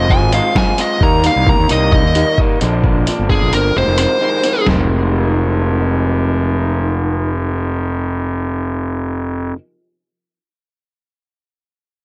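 A dark, distorted fuzz lead guitar solo with analog delay opens this moody, bittersweet indie rock excerpt at 131 BPM in F dorian, over a slightly broken-up, lo-fi electric guitar riff through a small old amp, a growly, overdriven fuzz bass, and a muffled, pitched-down trip hop sampler-style kit of thumpy kick, snare, hi-hat and toms whose kick and snare drop out at 3.8 seconds before the lead stops at 4.7 seconds and the drums at 4.8, leaving riff and bass in light reverb and digital ambience as the chords move through Fm7, Eb and Bbadd9.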